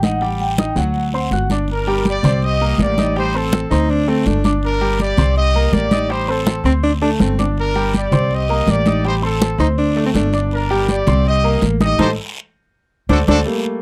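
Salsa in G harmonic minor, this driving, fiery clip, cut from a longer piece, moves at 163 BPM in a straight 4/4. A metallic, ringing vibraphone with medium mallets and motor vibrato states the brief opening melody over Dadd11/A and D7 chords, and a bright trumpet section takes the lead at 1.7 seconds, with vibrato and up-front presence, as the harmony settles into a repeating Gm, Cm7, Am7b5, D5 cycle. At 3.7 seconds a mellow baritone saxophone enters with a punchy, smooth-topped second line. Underneath, a brilliant, intimate grand piano with audible action noise and short sustain supplies accompaniment, while a woody, thumpy pizzicato upright bass on gut strings sits dark and forward. Damped, hard-hand congas with a thin skin and a raspy guiro drive the percussion, and the band hits an accent from 12.0 seconds through the closing Adim and D7 turnaround, all in a dry, close 1970s-style studio sound with light reverb.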